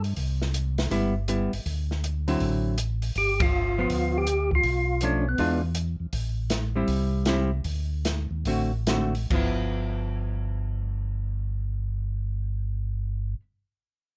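Lightly reverberant and close, this greasy, swinging soul jazz organ trio in G mixolydian moves at 137-161 BPM in 4/4 with swung eighths, slowing down from 6.1 seconds. A percussive tonewheel organ with key click, third-harmonic percussion, chorus vibrato and slow rotary speaker carries the melody in brief phrases, while a second, round and mellow tonewheel organ plays the bass and a dark, fingered hollow-body electric guitar comps through the chords. An acoustic jazz kit with a boomy kick, medium-tuned snare, hi-hat, ride and crash has a rolled-off top and stops at 9.4 seconds, and the band hits an accent together at 3.3 seconds.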